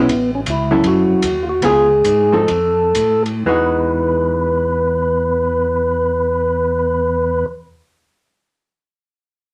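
Heard in a moderate club reverb, this swinging, soulful soul jazz organ trio excerpt puts an up-front, mellow, flute-like organ melody with third-harmonic percussion and slow rotary speaker over picked, compressed hollow-body guitar accompaniment and a fat organ bass with key click, also through slow rotary, while a dry cocktail drum kit with dark cymbals and a punchy kick plays hi-hat, kick and ride from 0.1 to 3.3 seconds as the pace slows, before the harmony settles on Emaj9 at 3.4 seconds.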